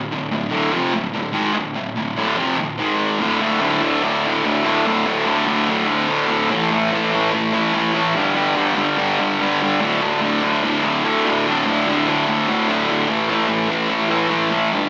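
Heard through a club PA with a small-speaker sound and moderate room reverb, this rowdy, swaggering rock cut at 146 BPM features a lone electric guitar, bright and thick with double-tracked fuzz, slapback echo and digital delay, pushed up front as it drives through power chords on D5, G#5, A5 and G5, moving into a new section at 3.2 seconds.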